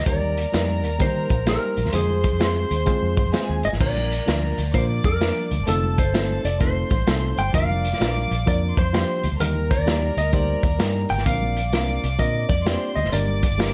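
A crunchy breakbeat drum kit sits up front with a gritty, saturated sound and dark cymbals, driving this uptempo 1960s-style soul excerpt at 129 BPM with a swung 4/4 feel, while a foam-muted, punchy fingered bass rounds out the low end. A clean, compressed electric guitar carries the melody over a barky, lightly overdriven reed electric piano and a distant, floating string section playing a second line, with very quiet bright congas in the background. The passionate mood moves through chords from Eb and Fm to Bb, F7 and a closing Bbadd9, all in a small room with light reverb.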